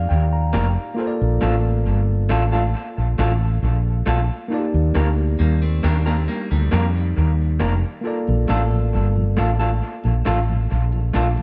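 A dark, warmly produced mix with light reverb carries this smooth, romantic reggae excerpt in Bb major at a slow 68 BPM, anchored by a woody, growly fretless bass sitting up front. A mellow tine electric piano with dub echo opens with a short fill and carries on as accompaniment, while a slightly broken-up, lo-fi guitar plays echoing stabs throughout. A clean picked guitar adds dub-echoed arpeggios from 5.4 to 7.8 seconds, and a round tonewheel organ with key click and a slow rotary speaker slips into the background at 8.3 seconds, over chords moving between Ebmaj7 and Bbmaj7.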